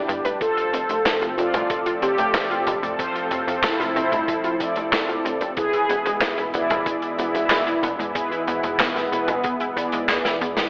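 Synthwave at 93 BPM in 4/4 with a straight feel, driving and nostalgic, this excerpt cut from a longer piece moves from F to E. Dark, brassy synth brass carries the melody with vibrato, chorus and digital delay while a second ring-modulated brass patch adds stabs through tape echo, over a thick detuned unison pad that pumps with the sidechain, a bright analog pluck playing arpeggios, and a tight sawtooth sequencer bass also pumping in the background. A gritty, saturated breakbeat kit of handclaps, hi-hat, snare and toms sits up front in gated reverb, joined by a thumpy, sampler-style electronic kick from 0.4 to 9.9 seconds, with a drum fill at 10.1 seconds, all inside a lush hall reverb and a telephone-like tone.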